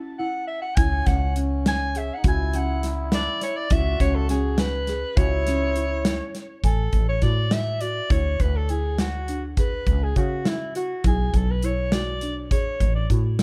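Intricate and brooding, this progressive instrumental excerpt moves in 5/8 at 204 eighth-note beats per minute in C# phrygian, with a buzzing, soft-mallet marimba spinning mellow arpeggios from the start beneath a breathy, whispered soprano saxophone melody bathed in plate reverb and tape echo. A raspy, growling trombone adds a gritty second line from 0.8 to 6.3 seconds, while a woody, hollow-toned fretless bass and a tight, small-room country drum kit sit up front. The production is dark and lightly reverberant, and the music shifts into a new section at 6.6 seconds.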